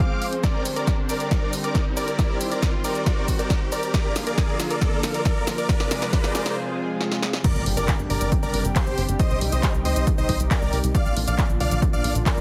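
Heavily compressed with light reverb and a radio-like sound, this driving, soaring uplifting trance excerpt builds with a background riser, drum fills from a punchy analog drum machine of snare, handclaps, hi-hat, shaker and crash, an up-front layered kick and a lush, chorused unison pad beneath a huge, euphoric, detuned supersaw lead with sidechain pumping, until a brief break gives way at 7.4 s to a drop with an electronic impact, joined at 7.6 s by a tight, dark, filter-plucked sequencer bass.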